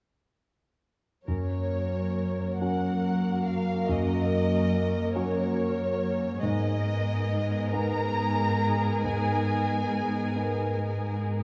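Moving in a slow, rubato 6/8 at about 46 dotted-quarter beats per minute with an uneven pulse, this bittersweet, sorrowful cinematic cue for orchestra is cut from a longer piece and shifts from F# to G#madd9 at 6.4 seconds. Con sordino violins carry a veiled, vibrato-laden melody up close, while a second, more distant violin line, soft-attacked violas in the background, a lush cello bass and a smooth, vintage-toned grand piano all enter together with it at 1.3 seconds. A moderate concert hall reverb wraps the dark, warm production.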